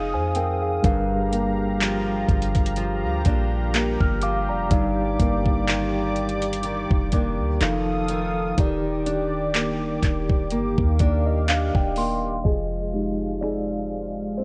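A lightly swung groove of finger snaps, handclaps, metallic hats and a knocking kick with gritty 12-bit sampler texture starts at 0.3 seconds in this moody, late-night contemporary R&B excerpt, where a boomy sine 808 bass, a mellow tine electric piano, a small fingerpicked nylon-string guitar with delay and a detuned sawtooth pad with chorus and sidechain pumping sit in light reverb under a worn, warbling cassette-tape haze, the electric piano taking a fill at 10.5 seconds and a short solo from 12.5 seconds.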